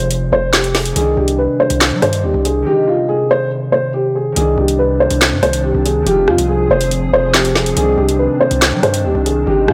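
A half-time drill groove in 4/4 drives this ominous hip hop piece, with an up-front electronic kit of handclaps, rim clicks, metallic hi-hats and a woody snare. Underneath, a distorted 808-style bass hits heavy and saturated, its sine tone carrying a noise layer and a fast attack that decays after each note. A dark, boxy grand piano carries the mellow melody over a thumb-plucked concert harp whose ringing acoustic accompaniment follows the moody Fm, Cmadd9 and Ab changes. At 4.4 seconds a glassy, ethereal FM pad enters with slow-blooming sustained chords, softened by ensemble chorus and its own reverb, and the hi-hats drop out at 9.5 seconds. The whole mix sounds blown-out and overdriven, set in a small room with light reverb, and the recording is cut from a longer piece.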